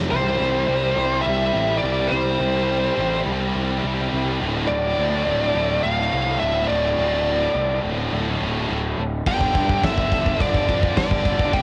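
A straight 4/4 heavy metal groove at 105 BPM drives this short, heavy and relentless cut from a longer piece, built on a double-tracked, high-gain rhythm guitar riff sitting up front alongside a growly, fuzz-soaked picked electric bass. A dark, distorted lead guitar carries the melody through a cassette-tape haze, with notable notes landing at 0.1, 4.4 and 9.2 seconds. A big rock drum kit with a punchy kick, fat snare and bright crash cymbal enters at 9.3 seconds, all set in light reverb with the raw character of a home recording on cassette.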